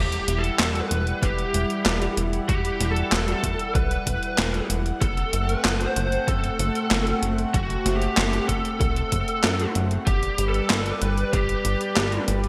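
Synthwave with a driving, nocturnal mood, this short cut from a longer piece sets a dark, overdriven lead guitar through a small cranked amp, thickened with chorus and delay, up front over a shimmering, detuned pulse-width pad and a glossy, nasal chorused synth bass, both pumping against the sidechain. A sampler-style 80s drum machine supplies handclaps, hi-hat and a gated-reverb snare, while a punchy analog kick joins at 1.2 seconds. The chords move from Emadd9 to F#dim to G inside a lush hall reverb and bright 1980s-style digital production.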